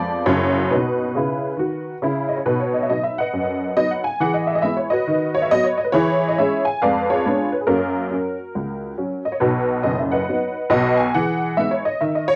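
Heard through the grain of a home cassette recording in a moderate studio reverb, this exuberant, playful stride piano jazz excerpt, cut from a longer piece, swings at 138 BPM in B major as a detuned, jangly, bright honky-tonk upright piano plays solo, present and up front, from 0.0 to 12.4 s across a range of F#1 to G#5, moving through chords such as F#7, B, Fdim7 and a closing Emaj7.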